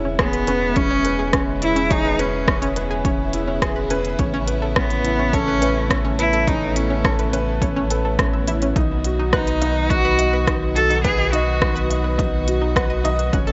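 A rich, focused cello carries the melody up front, a single bowed voice with vibrato and tape echo that enters at 0.2 s and falls away at 11.9 s. This hopeful, luminous piano and strings electronica moves in a straight 4/4 at 105 BPM through E6, Aadd9 and B, and it is cut from a longer piece. Beneath the cello, a worn, boxy grand piano with audible action noise and long sustain plays a riff through tape echo, while a dark chamber string section holds soft-attack sustained chords that pump with the sidechain. A round, deep analog bass pumps the same way, and a bright analog pluck sits in the background with arpeggios coloured by chorus and tape echo. A punchy, layered electronic kick with overdrive joins a tape-warm electronic kit of smooth hats and rim clicks, and light reverb and studio ambience frame the sound.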